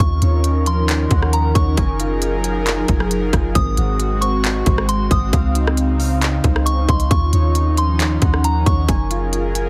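A deep, round 808-style bass sits up front in this melancholic, spacious cloud-rap excerpt at 135 BPM in a half-time 4/4 feel, moving through Ebm9, Gbmaj9, Ab7 and Dbmaj9 in Eb dorian, tuned to A4 = 438 Hz. A trap kit of hard-clipped kick, crisp hi-hats, handclaps and rim clicks drives beneath an airy, breathy pad that pumps with sidechain compression and chorus, while warbling, nostalgic lo-fi keys play arpeggios through chorus and digital delay. A pure, gentle FM bell carries the high melody with chorus and delay until 8.9 s, all in a dry, heavily compressed radio-style mix.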